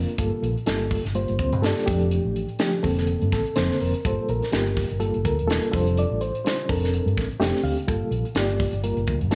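Slick and funky, this electric jazz fusion excerpt in G minor moves at 125 BPM in 4/4 with a light sixteenth-note swing, cycling through Gm9, F69 and Bbmaj9/F. Up front, a reedy, worn electric piano with a fast tremolo plays slightly out of tune through its built-in speakers, while a dark, round fingered electric bass holds the low end from 0.0 seconds. A crisp, airy drum kit joins at 0.1 seconds with a high-tuned snare, tight kick and hi-hat, heard in a small room with light reverb.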